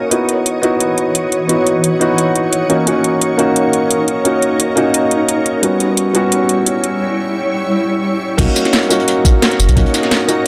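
A soft, mellow felt-muted upright piano with digital delay sits up front in this lush, uplifting liquid drum and bass cut, carried over a shimmering, ethereal pad whose detuned, granular chords breathe with sidechain pumping and chorus. A drum and bass kit with a cracking snare and metallic hats drives the build-up through a brief break at 7.0 seconds. At 8.4 seconds the drop lands on a rootless Bmaj9, where a deep, thick saturated sub bass and a knocking electronic kick join, along with a dark, gritty breakbeat kit tucked in the background, all bathed in a lush hall reverb.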